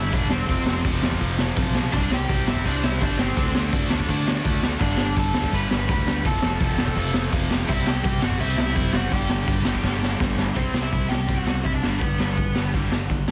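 A dense, heavily limited and nearly dry mix puts a raw garage drum kit up front: a boomy kick, a medium-tuned snare, hi-hat and crash cymbal sound saturated and gritty, with a rolled-off top and a small-room feel. This is an upbeat, energetic punk rock excerpt with a straight four-beat pulse, and the drums come in at 0.1 seconds, just after everything else. A lead guitar through a small cranked amp carries the melody with a lo-fi, overdriven edge until 12.7 seconds. Behind it, two double-tracked, picked electric guitars drive the riff, one bright and distorted, the other dark and overdriven, while a bright, growly, punchy electric bass sits in the background. A drum fill at 9.8 seconds leads into a new section at 10.6 seconds, and the excerpt ends mid-flow at 13.3 seconds.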